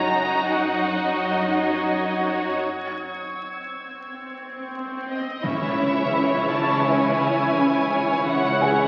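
Heard through the crackle of a very old 78 rpm record and a wet scoring-stage reverb, this brief cut from a cinematic suspense score feels mysterious and ominous in a straight 4/4. From the first moment, bowed violin sections carry a smooth, vibrato-rich melody and a lush second line up front, while a high violin texture hovers above until 5.0 s. A flickering, grainy granular pad with its own reverb sustains chords in the background, and a rich cello section anchors the bass beneath. An electronic swell rises from 3.7 s into an impact, and at 5.4 s the double basses return, distant and smooth, as the harmony settles into a minor chord. There, violas add expressive accompaniment, a chamber cello section plays a close riff, and at 6.1 s a very quiet, boxy concert grand piano with audible action noise adds a short-sustained texture.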